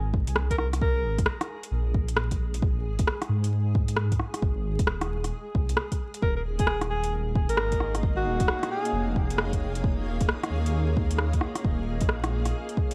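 A dry, gritty recording flecked with vinyl crackle opens on a rainy, nocturnal future garage groove, where a blurred, granular cloud pad and a dark, rumbling detuned saw bass with tube saturation both pump under the sidechain. An up-front, tape-warm electronic kick and a deep house kit of metallic hi-hats and rim clicks carry the swung pulse, while a jazz-style alto saxophone with vibrato and tape echo appears briefly at 0.5 seconds and returns at 6.2 seconds as the chord moves from Ab to Eb7(no3). From 7.7 seconds a bright, reversed, swelling texture drifts dreamily in the background, and the passage is cut from a longer piece.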